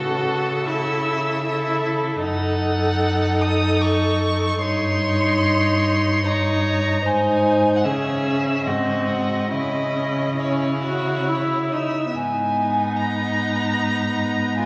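Classical, a slow, solemn and elegiac romantic movement for string quartet in C# minor, unfolding in 3/4 with a rubato feel at around 67-77 BPM. A clear, focused first violin sings the melody over a smooth second violin line, an even viola accompaniment and a rich cello bass, all four bowed with vibrato, while the viola and cello sit up front alongside the lead. The harmony passes through diminished and dominant-seventh colours before settling on C# minor, then turns toward G# minor at 12.2 s, all bathed in the long, wet reverb of a church.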